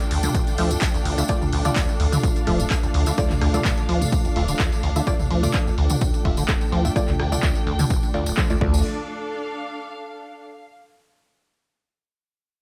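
Hypnotic and driving, this acid house excerpt in D minor runs at 127 BPM with a light swing, built on an overdriven electronic kick up front, a punchy analog drum machine of crash, handclaps, hi-hat, rim click and toms re-recorded in a large room, a jingly tambourine, and a squelchy, resonant sawtooth acid bass riff with tape echo over a round, deep analog bass in the background. A nasal, band-passed chord stab with cassette tape grit enters at 0.6 seconds, while a lush vintage string machine carries sustained chords under a filter sweep, both it and the basses pumping with the sidechain. Most parts stop near 8.8 seconds, leaving a rich, bowed studio string section with vibrato to play alone until 10.7 seconds, all in a dry mix.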